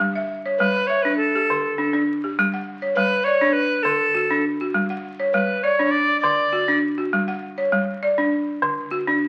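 West African traditional string and xylophone music in G lydian at 101 BPM, this joyful fragment of a longer piece sets an up-front, buzzing balafon struck with hard rubber mallets playing woody arpeggios under an airy, tongued alto recorder melody with vibrato and chiff that enters at 0.6 seconds and stops at 6.8 seconds, all over G5 and D harmony in a reverberant studio heard through the crackle of a very old 78 rpm record.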